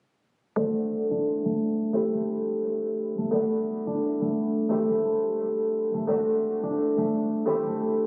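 Trip hop excerpt, hypnotic and brooding with a swung sixteenth-note feel, in which an up-front, full-bodied harpsichord with two sets of strings plays accompaniment through tremolo, gritty 12-bit sampler texture and tape echo while a ringing, fingerpicked concert harp spins arpeggios with its own tape echo, both sounding from 0.6 to 8.1 seconds under a filter sweep across D7, C6, Bm7 and Am7 chords, the mix captured as if on a phone in a reverberant club with compression and a muffled, low-passed tone.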